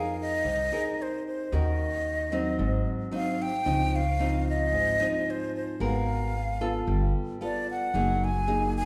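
Intimate and melancholic, this bossa nova passage in a straight 4/4 sets a breathy, hollow metal flute melody, with vibrato and a soft attack, over bright, fingerpicked classical nylon-string guitar and a woody pizzicato upright bass, all three up front for the full 8.9 seconds. The harmony moves from Fm7 through Ebm7, Ab7 and Dbmaj9 to Abm9, G9 and Gb69, while a recital-hall reverb with a 1.6-second decay gives the church-like room a lingering, wet bloom.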